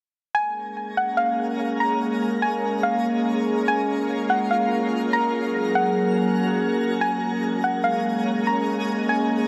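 A soft, round pluck with chorus and delay carries a dark, gentle melody from 0.3 seconds, joined almost at once by a warbling, nostalgic tape-like pad holding mellow, lo-fi chords up front and a faint, sparkling granular texture with an octave-up shimmer, floating inside a wet shimmer reverb in this spacious, ethereal half-time hip hop fragment in Bb minor at 144 BPM that moves from Bbm7 to Gbmaj7 and back.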